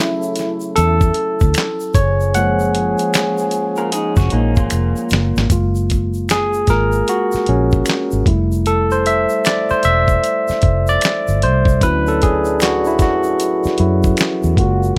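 A bright, barky tine electric piano carries this smooth, soulful neo-soul R&B excerpt throughout, over gritty sampler-style drums with a thumpy kick and fat snare, a dark, round foam-muted bass, close egg shaker and finger snaps, cup-muted trombone stabs that drop out at 5.1 seconds and return at 11.8, and a brief, slightly broken-up lo-fi electric guitar line entering at 3.8 seconds, all captured in a dry sound.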